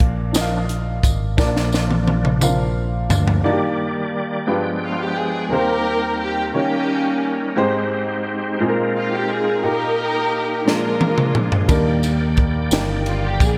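In a slow, straight 6/8 at 58 BPM, this jubilant, reverent gospel passage in Eb major opens with a crisp, high-tuned drum kit, growly fingered electric bass and jingly tambourine, which drop out at 3.4 s after a drum fill. A woody, boxy upright piano with slapback echo and a reedy tonewheel organ turning through a slow rotary speaker hold the harmony, and from 4.8 s a bowed string section with soft-attack vibrato and slapback echo carries the melody over chords such as Ebmaj7, G7b9 and Abmaj7. The drums return with a fill at 10.7 s, bass and tambourine rejoin shortly after, and the whole band sits in a lush hall reverb with a big arena sound.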